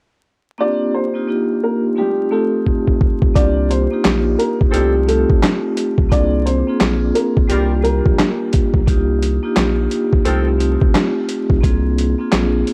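The gritty, pitched-down boom-bap drum kit stands out most: its thumpy kick, medium-tuned snare, hi-hat and handclaps sit compressed and up front, entering with a drum fill at 2.7 seconds. This moody hip hop cut, taken from a longer piece, moves at 87 BPM in C minor with a swung sixteenth feel. A dark, worn upright piano with audible action noise and a slightly detuned, woody tone carries the melody, while a ringing, metallic vibraphone played with medium hard mallets accompanies it, its slow motor vibrato colored by cassette tape. A deep, thick sine sub bass with tube saturation arrives at 3.4 seconds, and a distant, mellow saxophone section adds soft-attack jazz stabs with analog delay from 4.7 seconds. The chords move through Cm11, F9, Bb7/C and Gm7 over a dry hardware sound flecked with vinyl crackle.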